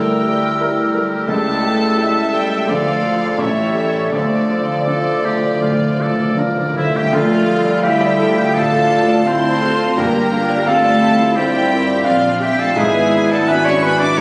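A classical romantic movement for piano and orchestra, tragic and brooding, with a flexible rubato feel. An intimate concert grand piano carries the melody with deep bass and audible action noise, joined by a soft-edged chamber violin section in the background, while a clear, close-miked oboe, a distant silver flute and a rich studio violin section weave second lines over dark violas, cellos and a floating double bass section, each string part bowed sul tasto. A very quiet French horn section holds sustained chords, a bassoon adds accompaniment until 6.8 s, and dry timpani enter at 2.7 s with a fill from 4.1 s, set in a moderate concert-hall reverb captured on a phone in the room.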